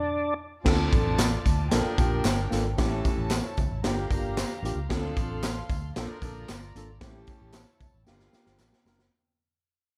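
The rhythm comes from a raw garage drum kit driving straight 4/4 at 113 BPM, its boomy kick, medium-tuned snare, hi-hat and dark crash cymbals sitting up front with a saturated, gritty edge, a rolled-off top and a pumping small-room sound, while tambourine and handclaps, compressed and placed in the background, add a tube shaker and group claps. This uptempo 1960s-style soul excerpt in D minor feels urgent and passionate, opening on a short stop before the full band enters between 0.6 and 0.7 seconds and cycles through Dm7, Bbmaj7, A7 and Gm7 under a fade-out. A vintage fingered electric bass, foam-muted, round and punchy, anchors the low end, and a worn, slightly out-of-tune tine electric piano heard through a combo amp supplies clean accompaniment. Behind it, an edgy jazz-style saxophone section with vibrato and a soft-attacked, sul tasto string section, pure and floating at a distance, carry second lines. 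A drum fill from 8.1 seconds closes the passage, and the whole mix has a dark production with light reverb and small room ambience.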